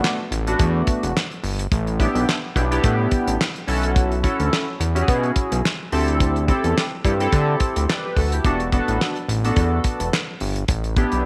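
Early-eighties boogie funk at 107 BPM in E minor, this slick, late-night excerpt sets a glossy, chorused polysynth over sus4 chords against a fat, detuned sawtooth analog bass entering at 0.3 seconds and a dry, damped 70s drum kit with a tight kick, fat snare, hi-hat and handclaps, all given a light small-room reverb.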